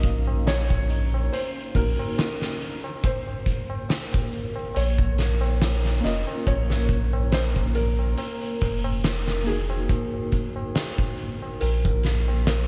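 Smoky and cinematic, this trip hop excerpt moves at 70 BPM in 4/4 with a light 16th-note swing, sitting on an E-flat minor chord throughout. An oversized, low-tuned drum kit with a fat snare and punchy kick hits up front in a pumping stone room, joined by a round, deep dub sub bass, while a felt-muted upright piano carries an intimate melody with audible action noise and tape echo. Behind them, a mellow tine electric piano with tremolo and 12-bit sampler grit, a detuned sawtooth pad swirling with chorus and phaser, and a low, ringing tabla entering at 0.3 seconds fill out the background under bright 1980s-style digital production.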